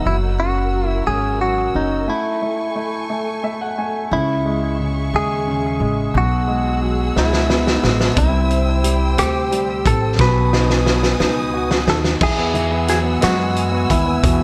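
A heartfelt, swaying pop ballad in six-eight opens on a bright, twangy clean electric guitar carrying the melody, its picked, compressed notes trailed by tape echo. Beneath it, a clear, polished baby grand piano plays the accompaniment, a warm studio string section holds bowed chords with expressive vibrato and portamento, and a woody, thumpy upright bass plucks pizzicato on gut strings, sitting up front. At 2.1 seconds the music reaches a break, and the piano adds a fill from 3.1 seconds. A loose indie drum kit enters at 7.2 seconds with a fill, bringing a fat snare, punchy kick, rim clicks, hi-hat and crash in a gritty, saturated sound with a rolled-off top, followed by another fill later on. The harmony drifts through colorful chords such as Amaj7, C#m and a surprising C before settling on Eadd9, all in a light studio reverb, in this excerpt cut from a longer piece.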